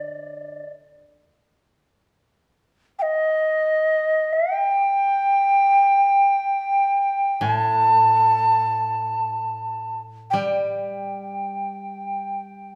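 Japanese traditional chamber music in free time, calm and austere, tuned to A4 = 444 Hz, heard as a 12.8-second fragment cut from a longer piece. A breathy, end-blown bamboo shakuhachi carries the melody up front between D5 and A5, its straight, tongued tone marked by a chiff, while a bright, woody koto played with fingerpicks provides quieter, dry accompaniment low in the range from A2 to G3. Both play throughout, set in a moderate recital-hall reverb of about 1.3 seconds.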